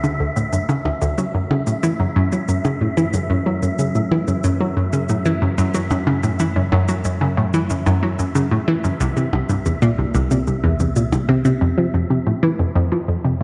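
Expansive and cosmic, this ambient, sequencer-driven space music moves at 92 BPM in a straight 4/4, heard as a cut from a longer piece. Up front, a hollow square pluck plays a bouncy, warbling riff with a vintage, mellow character, its fast attack and short decay colored by chorus and analog delay. Beneath it, an evolving analog drone built from detuned sawtooth and pulse waves holds the bass in the background, with a slow attack and long release. Electronic cabasa and percussion blips run through analog delay, while a breathy, wind-like tuned noise texture hovers dark and airy on E5 in its own reverb; both of these parts stop at 11.6 seconds, and the pluck and drone carry the brief closing section. The harmony moves from D5 through F#7(no3) and C to F5, and the whole dreamy mix is soaked in a wet plate reverb.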